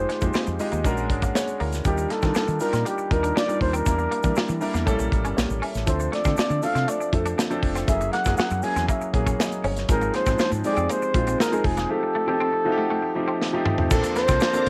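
A straight 4/4 groove at 120 BPM drives this breezy, upbeat 1980s jazz-funk pop excerpt in Bb major, where a mellow, breathy flugelhorn with scooped notes carries the melody over clear, polished baby grand piano accompaniment, a woody, round fretless bass, a clean, compressed semi-hollow guitar riff in the background, a punchy, mid-forward studio drum kit and a grainy egg shaker, until a drum fill at 13.4 s leads into lush, vintage string-machine chords entering at 13.9 s, all colored by cassette tape in a moderate room.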